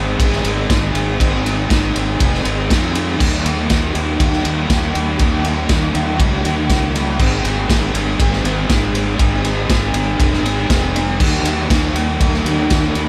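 A crunchy, bright, double-tracked electric guitar riff sits up front with a subtle chorus, moving between Ab and Eb in this hazy, brooding shoegaze and dream pop rock fragment at 120 BPM in a straight 4/4. A dark, round fuzz bass adds punchy overdriven weight beneath it, and from 0.2 s a raw garage drum kit joins with a punchy kick, medium-tuned snare, crash and ride cymbals, its small-room sound mid-forward with a rolled-off top. The whole mix is soaked in a huge ambient reverb with a 7.8 s tail, giving it a dreamy, washed-out haze.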